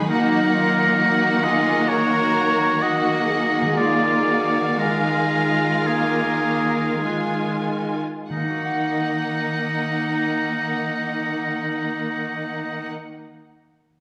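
A rubato 4/4 pulse drifting between 46 and 69 BPM slows through the first 8.3 seconds of this yearning, solemn classical excerpt in Eb minor, where a distant, vibrato-rich violin section carries the high melody over a smoother background violin line, an even viola accompaniment, a focused cello section holding Eb3 in the bass, ringing fingerpicked harp arpeggios and an up-front, clear oboe second line, all bathed in wet scoring-stage reverb as the harmony moves from Ebm to Bb7/Eb and back to Ebm at 8.3 seconds.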